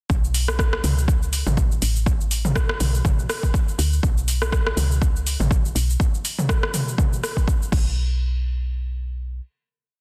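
Warm and hypnotic, this short afro house piece moves at 122 BPM in 4/4 with a 56% swing on the sixteenths. It opens straight into a drop that runs from 0.1 to 8.0 seconds, carried by an up-front, overdriven electronic kick with a deep, layered four-on-the-floor pulse. Around it, an overdriven deep house drum kit supplies metallic programmed hats, rim clicks, shaker, toms and crash, all re-recorded in a large room for a slightly roomy edge. A woody FM bass sits close and dark, its soft, round tone shaped with a fast attack and long gliding notes between A1 and D2, pumping through sidechain compression. The drums stop at 7.8 seconds, leaving the bass to ring through the final hit until 9.4 seconds, all within a dense, heavily limited modern master with little reverb.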